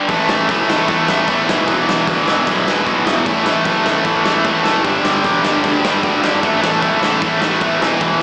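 This short cut from a longer punk rock piece sounds like a live gig heard through the venue's PA, with a recital hall reverb and a small speaker sound. At 152 BPM in a straight 4/4, the mood is upbeat and rowdy, built on power chords moving from A5 to E5, back to A5, then G5 and A5 again. A tight distorted guitar sits up front with a bright, picked riff and slapback echo, joined almost at once by a second electric guitar playing an overdriven riff of its own, also with slapback echo. Underneath, a picked electric bass snarls with a growly fuzz tone. The big rock drum kit has a natural, roomy sound, with a punchy kick, a medium-tuned snare and hi-hat driving the groove from just after the start almost to the end.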